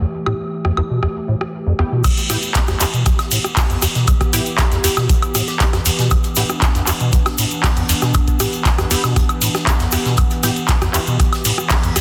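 Acid house with a hypnotic, driving pulse, opening on a warbling, nostalgic tape-like pad and a rubbery, resonant acid bass riff, both pumping against the beat, while a muted dub chord stab drifts in the background through cassette-tape grit and delay as filter sweeps run over the pad and stab. At 2.0 s the drop lands: an up-front, tape-warm electronic kick joins the dry, metallic-hatted analog drum machine with its clipped snare, handclaps, rim clicks and woodblock, under a very quiet acoustic kit played with bundle sticks and a grainy egg shaker. Around 5.5 s a round, keys-like FM lead sounds one brief note, all set in a light small-room ambience with a dense, heavily limited modern finish.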